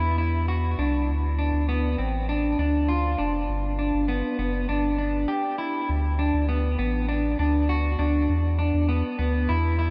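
In a straight 4/4 at 100 BPM, this dreamy, floating dream pop excerpt pairs a clean, dark, picked electric guitar playing arpeggios through subtle chorus and delay with a round, deep analog bass, both up front, inside a huge ambient reverb as chords drift from Esus2 through Dm and G to D6 and E5, shifting into a new section at 5.9 seconds.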